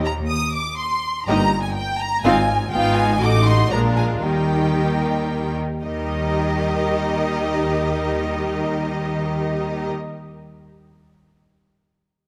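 A focused violin section with rich vibrato carries the melody high above the ensemble in this graceful, lively classical-period string orchestra movement in triple time, a brief passage cut from a longer piece, joined by an up-front, smooth second violin line. A clear, intense viola section fills in the accompaniment while a lush cello section sits in the background and a bowed double bass section anchors the low end. The music slows between 2.0 and 5.8 seconds as the harmony moves through diminished and dominant chords back to the home chord, and then a new section begins, all captured with close, detailed microphones and a moderate concert hall reverb.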